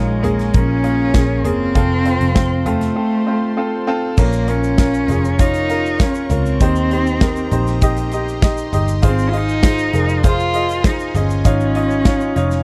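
A straight 4/4 groove from a polished, up-front modern drum kit, entering at 0.2 s with tight kick, snare, hi-hat, crash and toms, drives this bittersweet piano-driven pop passage, with a round, foam-muted picked electric bass underneath and a clear concert grand piano carrying the accompaniment. A rich, bowed solo cello with vibrato and slapback echo sings the melody, while a bright, detuned sawtooth pad with chorus sustains chords in the background, and a grainy tube shaker joins at 4.2 s after a brief break from 3.0 s. The sound is dry and close, in a 1970s studio style, and the music is cut from a longer piece.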